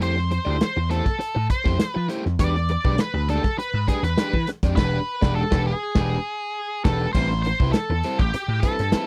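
This funk excerpt opens with the full band at once: an acoustic drum kit, a vintage slap bass, an overdriven rhythm guitar and a fuzzed octave lead guitar, setting a hypnotic, driving mood in a straight 4/4 feel. The drums sit up front with a roomy, rolled-off character, dark cymbals, a medium-tuned snare and a tight kick. Beneath them, the amped slap bass is warm and punchy in its low register. The picked rhythm guitar is overdriven and compressed, while the distorted octave-fuzz lead carries the melody prominently in the upper-middle range over Fmaj9 and E7#9 chords. The band hits a shared accent from 4.8 to 7.1 seconds, after which a new section settles on Am9 in a mostly dry mix until the music is cut off at 9.1 seconds.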